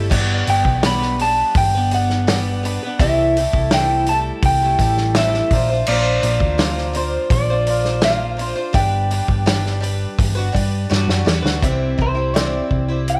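A picked twelve-string acoustic guitar opens this warm, jangly folk rock and heartland rock excerpt, its woody, boxy tone on old strings giving a shimmering, octave-doubled chime with a slight swing, joined at once by a dark, round hollow-body electric bass played with a pick through an amp. A natural country drum kit, recorded up front in a small room, brings a punchy kick, a medium-tuned snare, hi-hat and crash cymbal in a straight 4/4 feel. Just after it, an electric guitar through a small old amp carries the melody in a slightly broken-up, lo-fi voice with slapback echo, sitting a touch above the other parts in the mix. The harmony moves from G through C6, Bbadd9 and Gmaj7, and a drum fill leads into a new section at 11.6 seconds, where the electric guitar takes a clean solo over a C chord as the clip ends. Light reverb and studio ambience frame the whole performance.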